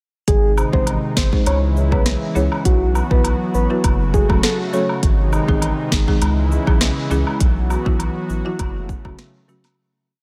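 Tough and sultry, this dancehall piece at 101 BPM in C# minor rides an up-front electronic drum kit with a deep kick, sharp snare and smooth hats, a thick saturated sub bass with slides, woody off-beat marimba chords, a detuned sawtooth pad pumping with sidechain, and vintage, band-limited cabasa and woodblock, while a round, dark octave-layered synth lead with chorus, vibrato and analog delay carries its syncopated hook until 4.9 seconds, before the music fades out from 7.4 seconds.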